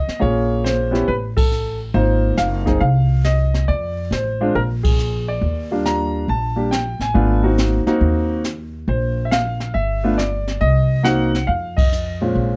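A warm, up-front grand piano carries the melody through this moody, late-night jazz piano trio excerpt, swinging over a woody, thumpy pizzicato upright bass and a brushed kit with dark cymbals, a high-tuned snare and a boomy kick, while the whole trio hits accents together at 1.3, 4.8 and 11.7 seconds within a dark production touched by light reverb.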